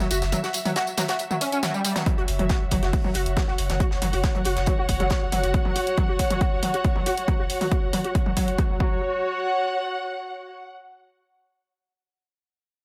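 Driving, industrial peak-time techno opens on a drop. A gritty, screaming overdriven synth lead riff, with distortion, tube saturation, chorus and delay, takes on a filter sweep from 2.1 seconds. Alongside it play smooth, bowed chamber strings, a deep, thick saturated sub bass, and hi-hat and snare from an acoustic studio kit with a rolled-off top. A layered techno kit adds hi-hat, tambourine and toms, and a heavy, up-front electronic kick enters at 2.1 seconds. The lead, strings and bass pump against the sidechain in a small room with light reverb.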